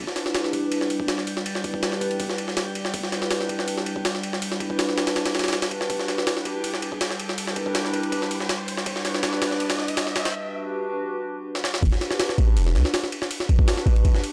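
A deep, boomy 808-style bass with a sine body and a noise layer opens this raw, nostalgic drum and bass cut at 162 BPM in E minor, joined almost at once by a gritty, overdriven sampler-style jungle kit with a thumpy kick and high-tuned snare, while a calm, glassy texture of drifting overtones hangs above on chorus and reverb over an Em7 chord. A very quiet electronic riser enters at 4.5 seconds to feed the build-up, and the texture and riser fall away at 10.3 seconds as a short break begins. A drum fill at 11.5 seconds then tips the track into the drop at 11.8 seconds, where bass and drums press up front over a rootless Em7. The dry, hardware-recorded sound carries only light reverb and a compressed, pitched-up edge on the kit.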